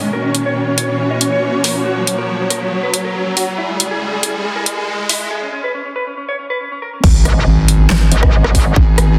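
A dark, clean electric guitar carries a dub-echoed melody over lush, bowed studio strings with vibrato and pumping sidechain, while a riser climbs and an overdriven big-room kit of hi-hat, handclaps, rim clicks and a huge snare builds a menacing half-time G# minor heavy wobble dubstep cut at 139 BPM. After a brief break from 5.3 seconds, the drop lands at 7.0 seconds with an impact, a layered, punchy electronic kick and a saturated square-and-sine wobble bass on G#. A bright, aggressive FM metallic wobble bass joins it up front, all under a dense, heavily limited master with hall reverb.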